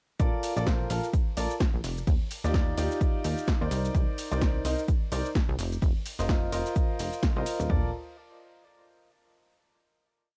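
A feel-good, uplifting piano house piece with a swung sixteenth-note groove. It opens at 0.2 seconds straight into a drop, where a bright grand piano plays a rhythmic chord riff in close voicing with long sustain, its vintage tone coloured by cassette tape and tape echo and pumped by sidechain. Beneath it, a plucky analog bass with a fast attack and wave-folded edge drives a syncopated, funky riff, also pumping with the sidechain. An overdriven analog drum machine sits up front with a four-on-the-floor kick and toms, while a second overdriven machine programs hats, shaker, ride and a snare backbeat, and a very quiet acoustic kit adds a looped breakbeat from a natural studio room. The harmony moves from Bbmaj7 through Ebmaj9, Cm9 and F7sus4, and at 7.7 seconds the piece resolves onto a final Bbmaj7 chord, all heard with little reverb in a homespun cassette sound.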